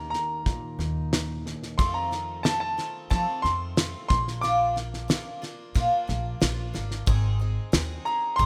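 This excerpt of indie folk opens with a clear, smooth upright piano carrying the melody up front, over a full-bodied jumbo steel-string guitar, fingerpicked, and a woody, dark pizzicato upright bass. A cloth-damped drum kit joins almost at once, thuddy and sitting up front, with a fat snare, a tight kick and a rolled-off top. At 1.8 seconds a picked twelve-string acoustic guitar enters, bright, boxy and shimmering with octave-doubled fresh strings, and the fingerpicked guitar drops out at 4.4 seconds. At a straight 91 BPM in 4/4, the harmony moves from Eb through F7 and Bb to Ab, with a new section arriving at 7.1 seconds as the arrangement builds. The mood is warm and nostalgic, heard through light studio reverb in a rough home-demo mix.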